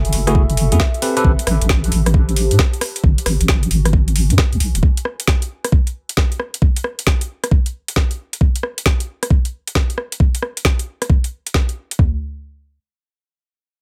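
Moody and late-night, this swung two-step UK garage cut at 134 BPM sets overdriven electronic drums up front, with a knocking kick and toms entering at 0.3 s beneath a woody snare, rim clicks and metallic hats that run to 12.0 s, while a deep, detuned wobble bass with chorus and a warbling, lo-fi tape-like pad with phaser and sidechain pumping carry F#m9, Am9 and G#m7 chords until the pad fades out by 4.8 s, bright bell-like electric piano stabs ring through dub echo, and a faint, round mallet-like synth pluck sounds a single E5, all under a dense, heavily limited master with light reverb.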